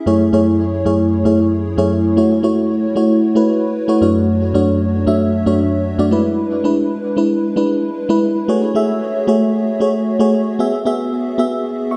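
Moody and urgent, this 12-second cut from a longer pop piece in F# minor at 114 BPM features a solo FM electric piano with a soft pad layer, its lush, detuned tone carrying a noise layer and fast-attack, decaying notes, sitting up front with chorus and diffuse ambient delay in a dreamy mix soaked in wet plate reverb as it moves from Amaj7/F# through F#m7, Dmaj7/F# and E7 before shifting to F#madd9 at 8.5 s and then Eadd9.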